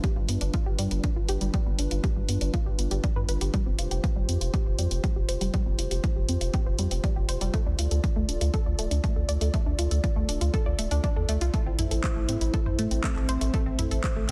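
Melancholic and hypnotic, this excerpt of melodic techno moves in a straight 4/4 pulse over a progression from G7 through Fsus2 and Dm to Am. A punchy, tape-warm electronic kick drum sits up front, joined by a house kit of handclaps, warm hats and toms carrying a touch of studio reverb, with sidechain pumping on the hats and toms. Beneath them a round, deep analog bass with a nasal edge enters at 0.2 seconds, while a moody, detuned analog pad holds sustained chords with a slow attack and long release, thickened by chorus and breathing with sidechain pumping. An analog pluck spins arpeggios throughout, its sawtooth tone coloured by chorus, phaser and digital delay, with a filter sweep running across the whole passage. At 11.5 seconds a smooth, expressive synth lead with vibrato and delay arrives for a short melody. The mix is dry, dense and heavily limited in a modern style.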